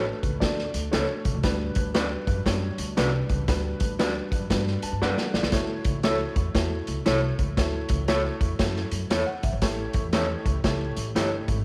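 An up-front vintage drum kit, with a punchy kick, medium-tuned snare, hi-hat and a rolled-off top in a small pumping room, drives this joyful, swinging 1960s-style soul excerpt from 0.2 s and adds a fill at 5.0 s. Beneath it, a thumpy, woody upright bass on gut strings carries a touch of transformer saturation, while a dark, slightly detuned upright piano with audible action noise accompanies and plays its own fill from 4.5 s. A slightly broken-up electric guitar through a small old amp adds fingered stabs over chords moving from Dmaj7 and Gmaj7 to F#m7 and A7, all set in light studio reverb with vinyl crackle.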